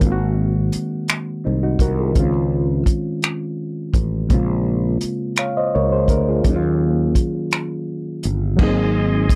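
A reedy, slightly out-of-tune electric piano with spring reverb and light overdrive opens this sultry, late-night slow R&B excerpt in 6/8 at 56 BPM, joined from the start by a growly, punchy fretless bass and a gritty, saturated soul drum kit of tight kick, finger snaps, hi-hat and dark crash cymbals, all up front in a dry, close sound, moving through Ab7, Dbmaj9, Bbm7 and Ebm7 to a break at 7.5 seconds before a fat, key-clicking tonewheel organ through a fast rotary speaker enters softly on the returning Ab7 at 8.6 seconds.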